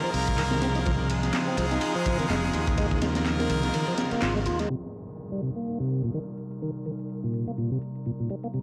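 A fat, lightly overdriven tonewheel organ riff with a slow rotary speaker opens this swaggering, raw breakbeat cut at 125 BPM with a 16th-note swing, over a warbling, detuned tape-like pad pumping in the background and brilliant horn stabs with vibrato and tape echo. A crunchy, saturated breakbeat kit with a high-tuned snare and dark cymbals, a growly picked electric bass and a dry analog drum machine's handclaps and hi-hat drive the Fm7 groove to a band accent at 4.2 seconds. From 4.7 seconds, kit, bass and horns drop away as the harmony moves to Cm7, leaving organ, pad and drum machine under a filter sweep and a distant downlifter, all through gritty hardware tone with vinyl crackle and a small-room reverb.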